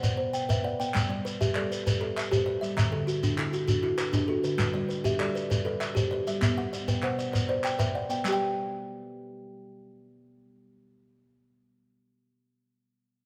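Two kalimbas open together in an interlocking, mbira-style arpeggio cycle in G major: one woody and boxy with a short thumbnail pluck, the other hollow and ringing with a thumb pluck and tape echo. A grainy, mellow shekere plays with them from the start. This hypnotic southern African traditional piece moves at 131 BPM in a straight 12/8, with crisp, vintage-sounding group handclaps entering at 0.9 seconds as the chords shift among Bm, G and D in a moderate recital hall reverb. At 8.4 seconds the shekere and handclaps stop, and the two kalimbas carry the closing passage of this cut from a longer piece.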